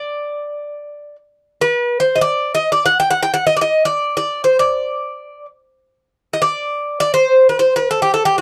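A dry, close recording in a 1970s studio style, touched with light reverb, frames this passionate, stately 8.4-second excerpt of a Turkish makam ensemble piece in free time in D makam hicaz, where a solo Greek bouzouki plays up front, its picked double strings ringing warm and metallic with some octave-doubled courses as it ranges from F#4 to G5.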